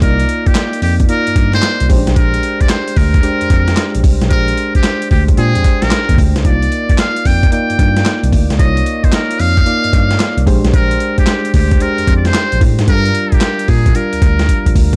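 R&B in a new jack swing style at 112 BPM with a swung 16th-note feel in C minor, this confident, bouncy excerpt from a longer piece sets a buzzy, vintage jazz-style metal-muted trumpet solo with vibrato and scooped notes over round, chorused synth keys with tube saturation moving through Cm11 and Bb13 chords, while a worn, slightly out-of-tune tine electric piano carries the bass and an up-front, gritty, pitched-down boom bap sampler-style kit of thumpy kick, high-tuned snare, hi-hat and handclaps drives the groove to a drum fill at 14.5 seconds, all within dark production and digital ambience.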